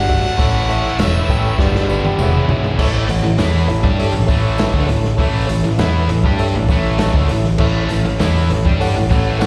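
This sounds like a live gig heard through the venue's PA, with a recital-hall reverb around it. It is a swaggering, confident classic rock piece in straight four, cut from a longer performance. A clear, smooth-topped harmonica with light vibrato carries the melody until 2.1 seconds. A mellow, reedy electric piano shimmers beside it with fast tremolo and slapback echo. Two double-tracked guitars drive the riffs: one biting and overdriven, the other tight and distorted, both bright and picked. Beneath them, a growling, round, overdriven electric bass sits up front, and a vintage acoustic kit adds a punchy kick, dark cymbals and a rolled-off top, while a jingly tambourine sounds distant and very quiet. The drums and electric piano both fill from 1.6 seconds as the chords move from A through G and E6, landing back on A at 2.8 seconds as the next section begins.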